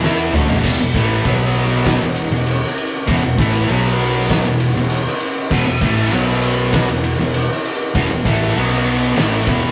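Stoner and doom metal with a sludgy, heavy mood, this short cut opens on a drum fill from the oversized low-tuned kit, whose punchy kick, fat snare and dark cymbals sit up front in a bright stone room that pumps. A bright, double-tracked overdriven electric guitar carries the riff over two thick fuzz guitars, one very quiet and one with added distortion in the background, while a growly fingered bass with tube saturation anchors the low end as the harmony moves between E5 and B5. The rough rehearsal-room sound carries warm saturation and a moderate reverb.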